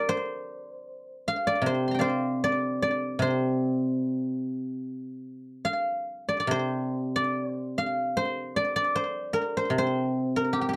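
Chinese traditional solo plucked-string music in C shang mode, flowing and elegant, moves at a rubato 75 BPM in 4/4 with uneven beats, cut from a longer piece. A lone guzheng, played with fingerpicks, sits up front with a silvery, ringing tone across a range from C3 to C6, touched by a slapback echo. The dry, close 1970s-style studio sound carries light reverb, and a new section begins at 6.5 seconds before the cut at 10.8 seconds.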